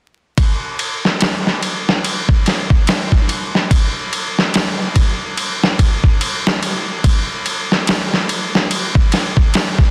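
A dusty, sampler-style soul drum kit opens this brooding, smoky trip hop excerpt at 0.4 s and carries it alone through 9.9 s, its thumpy kick, medium-tuned snare and ride cymbal set up front with a swung sixteenth-note feel in 4/4. The compressed kit sounds gritty and re-recorded in a large room, sitting under light reverb. Vinyl crackle runs through a dense, heavily limited modern master.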